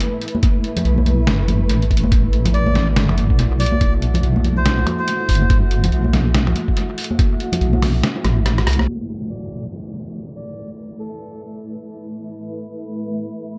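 A deep, wobbling sawtooth bass sits up front beside a thumpy, muffled kick in this dark, meditative deep dubstep excerpt at 142 BPM in half-time and A dorian, where a blurred granular cloud pad holds an Asus2 chord, sampler-style trip hop drums and close, ringing congas and bongos trail dub echo, a reedy, breathy melodica enters at 2.5 s, the kick drops out at 8.0 s ahead of a drum fill, and from 8.9 s the pad is filter-swept as an electronic downlifter sounds through the echo-heavy, low-passed mix.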